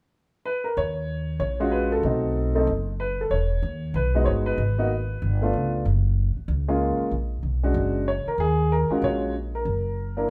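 This jazz piano trio fragment has a late-night, smoky mood, swinging briskly at 189 BPM in 4/4 in E-flat minor. A warm baby grand piano carries the melody from 0.5 seconds, its natural, long-sustaining tone sitting up front in the mid register. The upright bass joins at 0.8 seconds, played pizzicato on steel strings, with a woody, dark sound that also sits close in the mix. The harmony moves through rich, colourful changes, from Ebm11 through B7b9, Emaj9 and Gbmaj9 to an altered Bb7, before returning to Ebm11 and ending on Gbaug. Light reverb gives the feel of a band playing live together in one room.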